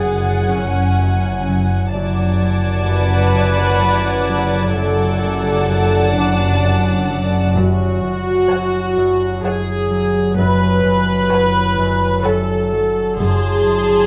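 A slow, unhurried three-beat pulse, played straight, underlies this mysterious, eerie suspense cue from a film score, cut from a longer piece. Up front, a pure, floating viola section plays the accompaniment in sul tasto bowing, while a thumb-plucked concert harp repeats a ringing riff in its low register. High above, a warm violin section carries the melody with light vibrato and a soft attack, shadowed by a darker chamber violin section on a smooth-topped second line. In the background, a woody double bass section and a floating cello section hold a bowed bass alongside a metallic, inharmonic drone treated with chorus and its own reverb. A clear violin section adds a high texture through the first 7.0 seconds and returns at 13.2 seconds, as the harmony moves from suspended and added-ninth minor colours to a rootless D over F#, all set in a moderate stone room and captured with close, detailed microphones.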